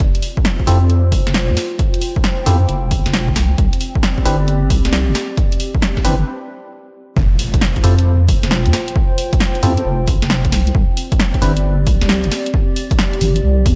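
A deep, wobbling bass with chorus sits up front in this bouncy, sunny two-step UK garage excerpt at 134 BPM, swung on the sixteenths and moving between Fmaj9 and Csus2. A punchy electronic kick and analog drum-machine hi-hat and snare, re-recorded in a large room, drive it along beneath a warbling, nostalgic lo-fi pad with sidechain pumping, while a hollow, mellow organ stab with subtle chorus and analog delay enters at 0.7 seconds. After a short break, the drop lands at 7.2 seconds with a background electronic impact, and the organ stabs stop at 11.5 seconds, all in a light reverb with some lossy compression artefacts.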